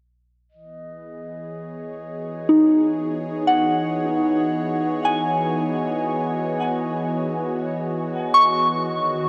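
A slow, straight 4/4 pulse at 58 BPM carries this serene, peaceful ambient excerpt in E major, built on a sustained E6 chord. A smooth, detuned sawtooth analog pad with chorus and a glassy, beating glass harmonica, which sounds boxed into a small room, both fade in from 0.5 s. A soft FM synth bell enters up front at 2.5 s with mellow, decaying arpeggios, treated with chorus and diffuse ambient delay, while the whole piece sits in a vast, echoing reverb over a faint mains hum.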